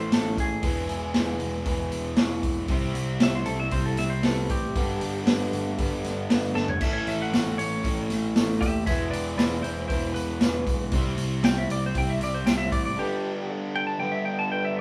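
Classic rock at 117 BPM in a straight 4/4, this swaggering, driving excerpt puts a twangy, compressed lap steel slide solo on top of an A, E, C and Gadd9 progression, while a reedy electric piano with fast tremolo comps in the background and two overdriven guitars, one bright and one hollow-bodied, play riffs behind it. A growly picked bass and an up-front vintage drum kit with a punchy kick and dark cymbals drive the band, which sounds captured live in a small room, and just after a drum fill at 6.6 seconds a very quiet, jingly tambourine joins in. Bass and drums drop away for a break at 13.0 seconds, leaving the slide, piano and guitars to carry on.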